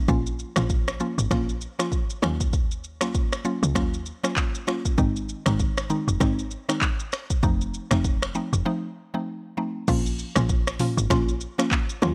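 Built on a swung 4/4 afrobeats groove, this mellow, smooth excerpt pairs an electronic drum kit of deep kick, metallic hats, snaps, claps, rim clicks, shaker, toms and crash with a woody, punchy log drum bass and a dark, round mallet-like synth pluck shimmering with chorus and phaser, moving from Bbm through Ebm7, Ab and F7 in a dry, up-front mix, with a break at 8.7 seconds before a new section returns to Bbm at 9.9 seconds.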